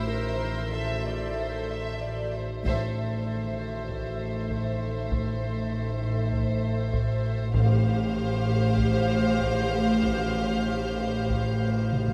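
A marimba riff on A, struck with medium mallets, anchors this mysterious, tense suspense film-score excerpt at 97 BPM in A minor, where dark, intimate sul tasto violins carry the melody over a second violin line, rich floating violas, pure cellos and background double basses, while an eerie metallic FM drone with chorus sits underneath, warm, floating high violins come and go, dry taiko enter at 2.7 seconds, and a very quiet hard-mallet timpani appears at 7.5 seconds, all within a vast cathedral reverb.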